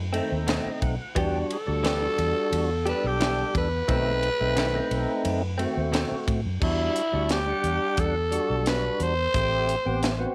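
This mournful, soulful straight-eighth soul blues excerpt opens on a dark, round, foam-muted fingered electric bass, joined almost at once by a tight funk drum kit with a high-tuned snare and a fat, lightly overdriven tonewheel organ that plays a percussive fill, its key click and slow rotary speaker bathed in plate reverb. Clean, compressed electric guitar stabs, recorded direct and colored by phaser, sound until 6.2 s, while a raspy, growling tenor saxophone enters at 1.5 s to carry the melody up front with a breathy tone and light vibrato. A moderate club reverb surrounds the band as the chords move between B7b9 and Em7 before reaching Am7 in the second section.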